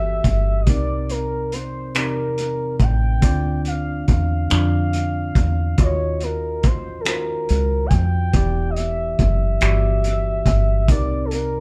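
A slow, straight 6/8 R&B groove at 47 BPM opens with a dark, round, foam-muted dub bass played with the fingers, joined at 0.2 s by a cloth-damped, thuddy drum kit whose finger snaps, hi-hat and tight kick sound muffled, gritty and up front. From the first moment, a worn, slightly out-of-tune tine electric piano heard through a combo amp carries minor-ninth chords moving from Em9 through Cm9, Dm9 and D#m9, while a smooth, sustained lead of triangle and sine tones glides between notes with portamento, vibrato and chorus. The late-night, sultry mood comes from a band playing live in one room with light reverb, in a short cut from a longer piece.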